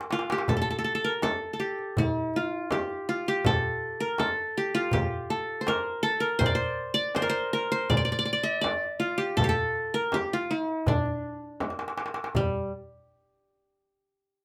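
A short darbuka fill opens this stately, festive Arabic maqam ensemble passage, with the qanun's bright-edged, fingerpicked triple strings sitting up front in the melody from the start, and a soft-handed frame drum joining at 0.5 seconds. At an unhurried 81 BPM in a straight 4/4, the metal-shelled darbuka sounds crisp, compressed and saturated under hard hands, while the frame drum carries a warm small-room tone. A second drum fill arrives at 11.6 seconds before the parts stop at 12.7 seconds, all set in a wet studio ambience cut from a longer piece.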